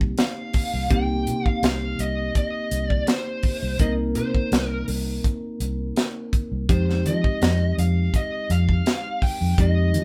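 Brooding and smoky, this excerpt from a longer piece is a straight-eighth soul blues in C minor at 83 BPM, moving from Cm7 to Fm9 at 6.7 seconds. A tight funk drum kit sits up front with a high-tuned snare, a tight kick and hi-hat, its tight booth giving a pumping room sound. A vintage muted fingered electric bass is dark, round and punchy, amped and foam-muted, and also placed up front. A bell-like tine electric piano adds bright, clean, direct accompaniment lower in the mix. From 0.2 seconds a smooth overdriven lead guitar carries the melody with a dark, picked tone, and the whole band plays live in one room with moderate studio reverb.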